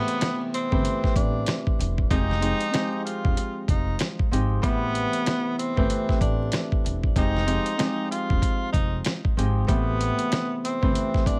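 Vinyl crackle sits over a light reverb, giving this short excerpt of moody boom-bap hip-hop a dusty, lived-in surface. At 95 BPM in 4/4 with a swung 16th-note feel, it stays in A minor, alternating between Am7 and Fm7. A fingerpicked Celtic harp rings out up front from the very start, filtered at both ends, while a sampler-style soul drum kit lands at 0.1 seconds with a compressed, gritty, tape-warm punch, a thumpy kick and a fat snare under the hi-hat. A pizzicato upright bass with steel strings enters at 0.7 seconds, adding a woody, dark low end. Over it all, a clear tenor saxophone plays the solo melody in a jazz style, its subtone, vibrato and scooped notes trailed by delay and shaped by filtering.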